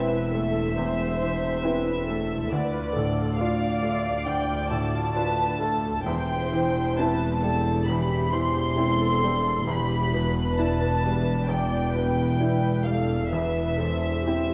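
Two soft-edged violin lines, played sul tasto with a pure, floating tone, carry the melody and a second line across this bittersweet, moving cinematic fragment, their pulse loosened by rubato. A bright, brilliant baby grand piano with short sustain and a dark, woody, lush viola section with vibrato fill in the accompaniment, while a very quiet concert harp adds ringing fingerpicked arpeggios. Cellos sit in the background and distant double basses anchor the low end, all within a wet, reverberant scoring-stage space and a dark, warm production.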